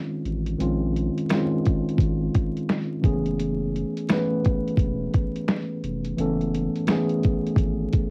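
A gritty, overdriven sampler-style drum kit of thumpy kick, snare, hi-hat and finger snaps sits up front in this swung, melancholic lo-fi hip hop excerpt, alongside a mellow, cassette-toned tine electric piano drifting between Bbm11 and Gbm11 and a deep, tube-saturated sub bass, all wrapped in a reflective home-cassette recording with vinyl crackle.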